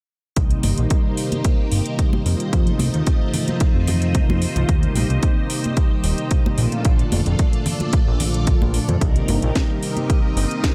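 Sensual and cosmic, this nu-disco fragment moves at 111 BPM in a straight 4/4, in C dorian, cycling through Cm7, F7, Eb6 and Bbmaj7 from 0.4 seconds. A punchy, up-front electronic kick and a house kit with a cracking snare and metallic hats drive it, while bright, close congas with hard hands sit in the background and a fat, detuned analog bass carries the low end. Above them, a dark, smooth analog pad with chorus, tape echo and sidechain pumping blends with a lush vintage string machine treated with phaser and ensemble chorus, all in a dry space with little reverb.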